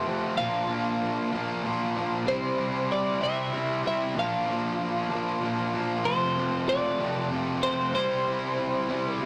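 A fuzz guitar, bright, distorted and double-tracked up front, opens this anthemic, cathartic rock excerpt at 63 BPM in 6/8 alongside a clean, picked twelve-string electric guitar melody in a moderate stone room with rough rehearsal-room saturation, moving through Bb, C and F chords before both parts stop near 9.2 and 9.3 seconds.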